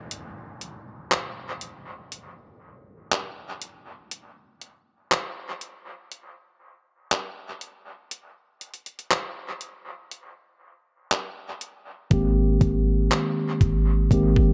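Set in an echo-heavy mix with light reverb, this moody, longing contemporary R&B excerpt opens with an electronic downlifter that runs until 4.1 seconds, while a detuned 8-bit drum machine sets up handclaps, hi-hat and a thumpy kick that sound tape-warm, sampler-style and up front, soaked in dub echo. At 12.1 seconds the break gives way to a mellow tine electric piano, heard as if through built-in speakers, and a clean 808-style bass with a deep, boomy, dark sine tone that hits fast and decays, both settling on an Abmaj7 chord.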